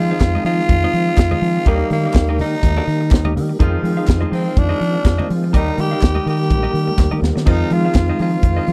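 A tight, swung funk drum kit with a high-tuned snare sits up front in this driving, sultry disco excerpt, entering at 0.2 seconds together with very quiet ringing congas and crisp group handclaps, while a deep, round fingered bass anchors the Fm7 and Eb changes, a raspy, growling tenor saxophone carries the melody, an intimate baby grand piano, a compressed semi-hollow guitar and a tonewheel organ with key click, chorus vibrato and slow rotary speaker fill in behind, and a drum fill at 7.0 seconds leads into the final Fm7 of this dry, close 1970s-style studio recording.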